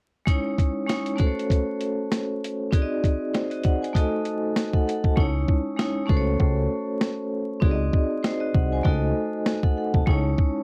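A pitched-down, compressed sampler-style boom-bap drum kit with a thumpy kick and high-tuned snare anchors this moody, gritty hip-hop excerpt at 98 BPM, swung on the 16ths in C# harmonic minor, while an up-front, bright, ringing hard-mallet vibraphone with slow motor vibrato and cassette-tape coloring moves through C#madd9, F#m, G#7 and D#dim, and at 5.2 seconds the hi-hats drop out as a dark, round fingered dub bass enters beneath over a C# pedal, the whole recording carrying light reverb, a home-cassette character and vinyl crackle.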